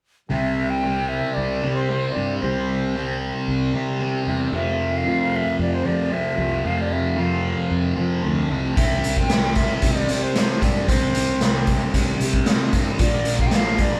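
A straight 4/4 pulse at 114 BPM in C mixolydian drives this hazy, kaleidoscopic psychedelic rock excerpt, where a thick, double-tracked fuzz guitar riff with phaser sits up front beside a round, overdriven fingered bass, a pure silver concert flute sings a vibrato-laden melody above, a reedy pedal harmonium breathes a low C drone in the background, and a gritty, punchy garage drum kit of hi-hat, kick and snare enters at 8.8 seconds, all captured as a band playing live in one room with a moderate large-studio reverb over a C5, F5, C5, Bb progression.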